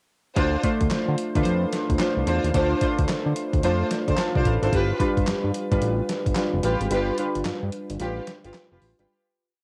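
Dry cassette home recording of a bouncy, slick new jack swing R&B piece at 110 BPM in D dorian, where a thumpy, sampler-style 12-bit drum machine plays a hard-swung beat with its snare layered with clap, a fat, detuned sawtooth synth bass plays a swung synth-funk line with ghost notes and chromatic approach notes, round, chorused analog keys play syncopated drop2 chord stabs with a short fill at 3.9 seconds, and a lush, bowed string section adds short syncopated stabs with tape echo, moving from Dm7 to G7 before a break and fade-out from 6.9 seconds.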